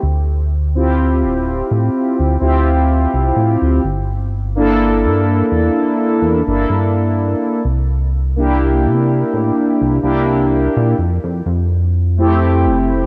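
A dark cassette-tape haze and a lush hall reverb wrap this short vaporwave fragment, cut from a longer piece, in G dorian at a slow 63 BPM, melancholic and woozy. A chorused synth bass, glossy and retro with an evolving pulse-width tone and a plucky filtered attack, sits up front from the start, and a mellow synth brass, round and brassy with a filter sweep, enters at 0.7 seconds, bathed in lush chorus and analog delay. The two move through Dm11, Gm69, C9 and Fmaj7 chords.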